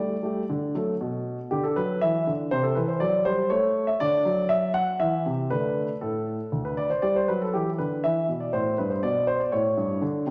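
In a straight 3/4 at 120 BPM, this playful, cheerful classical-period piano sonatina passage comes from a longer piece, with a solo grand piano playing from 0.0 to 10.3 seconds across a range from D2 to F#5. The piano sounds intimate, natural and up front, its action noise audible, set in a wet recital hall reverb. The harmony moves from D through Bm7, Cmaj9#11 and Gadd11 before settling on A7 near the close.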